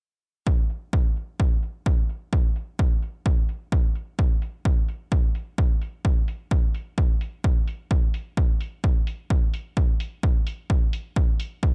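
A punchy analog kick drum opens this short house excerpt at 0.5 seconds, sitting up front and driving a straight 4/4 pulse at 129 BPM. An electronic hi-hat joins at 0.7 seconds, set far lower in the mix and dulled by a low-pass filter that also shapes its large-room tone. Both drum parts carry the character of a big room, though the overall sound stays dry and close. A filter sweep runs across the drums for the whole passage, adding a gritty, restless edge to the stripped-back groove. The kick plays until 11.7 seconds, giving the piece a driving mood.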